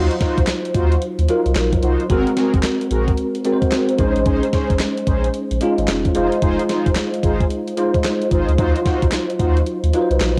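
New jack swing R&B at 111 BPM in Eb dorian, this bouncy, slick excerpt pairs a bright, bell-like tine electric piano under ensemble chorus and plate reverb, mellow detuned synth brass stabs with chorus, plate reverb and analog delay that stop at 9.6 seconds, a round, deep analog bass with tube saturation, and a crisp 8-bit drum machine with thumpy kick, fat snare, handclaps and hi-hat given a tape-warm, up-front sound, all moving through Ebm69, Ab9, Bbm11 and Fm7 with a swung sixteenth feel in moderate booth ambience on a cassette home recording.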